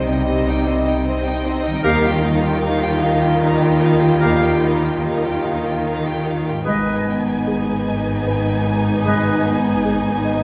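The violin section carries the melody in this moving, longing cinematic excerpt, its close, bowed tone smooth and even with vibrato, while a second violin line in the background adds portamento and expressive colour. Set in a rubato triple metre, the passage moves from C minor to E-flat add9 at 1.8 seconds and darkens to A-flat minor at 6.7 seconds. Beneath it, a dark, mellow baby grand piano with short sustain, a lush viola section, a distant, roomy French horn section holding sustained chords, and a very quiet, ringing harp playing arpeggios fill out the texture. The bass is shared by a rich cello section and a soft-attacked double bass section, both bowed with vibrato and portamento. From 1.8 seconds, a clear clarinet, an airy, hollow flute and a smooth-topped oboe join with second lines, the clarinet leaving at 9.3 seconds. A concert hall reverb places the whole ensemble further back in the room.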